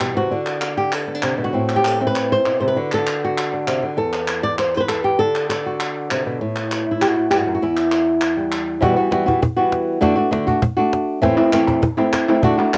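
An up-front, fingerpicked flamenco guitar and crisp, distant palmas hand claps in a large room open this dramatic, intense flamenco fragment at 198 BPM in 4/4, the guitar carrying a cassette-tape color as it moves through D, Am and Em chords before a woody, close and dry cajon with faint snares enters at 8.8 seconds and the claps return at 11.4 seconds, all captured as a home cassette recording with light reverb.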